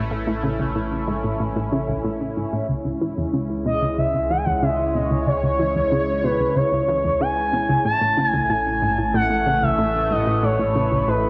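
A straight 4/4 pulse drives this cosmic, mysterious fragment of sequencer-driven ambient space music, where a round, nasal analog pluck riff with chorus and analog delay and a fat, thick analog bass sit beneath a bright, detuned, resonant pad holding sustained Aadd9 and C#m chords, and at 3.7 s a smooth, expressive portamento lead with vibrato, chorus and delay joins to carry the melody up front, the mix set in a wet plate reverb and marked by lossy compression artefacts.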